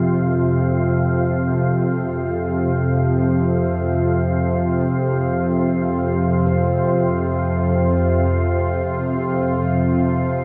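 Vast and ominous, this dark ambient drone drifts in free time over an F5 chord, tuned to A4 = 441 Hz and set in a vast, echoing cathedral-like space. Up front, a calm, detuned organ-like drone built from sine tones holds the low register with ensemble chorus. Above it, a bright, evolving sawtooth pad sustains chords with chorus and a filter swell, while a very quiet bronze singing bowl, played with a felt mallet, adds mellow, metallic ringing with slow beating from a boxy small room.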